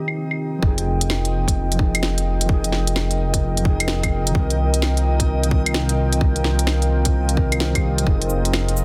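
Future garage with a rainy, wistful mood, this short excerpt cut from a longer piece moves in a swung 4/4 over minor-seventh chords. Muted, felt-like synth keys open the track, soft and intimate with a warbling, vintage character roughened by 12-bit sampler grit, chorus and analog delay. A dark analog pad holds sustained chords beneath them, while a reversed, swelling texture drifts dreamily in the background under its own reverb. The organic electronic drum kit enters almost at once with cabasa, claves, smooth filtered hats and a woody snare, overdriven and up front in a small room. At 0.6 seconds a deep, rumbling detuned saw bass arrives alongside a tight, tape-warm electronic kick, with the bass, pad and keys all pumping against the sidechain. The mix is dense and heavily limited, with light reverb around it.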